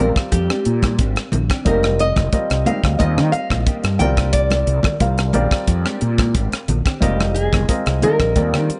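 Intense and funky, this short cut from a longer electric jazz fusion piece moves at 90 BPM in a straight 4/4, centred on F dorian. A small, fingerpicked nylon-string guitar carries the melody between G4 and G5, while a worn, intimate grand piano supplies dark accompaniment, its action noise audible beneath the chords. Up front, a round, punchy fretless bass with analog chorus anchors the low end, joined at 0.2 seconds by a dry, tight funk kit of hi-hat, kick and rim click. Ringing, high-tuned congas sit in the background from 0.8 seconds, and a clean, compressed electric guitar adds very quiet stabs. The harmony cycles through Bb13, Fm11, Ebmaj7 and C9sus4 in a small room, with a slightly muted top end.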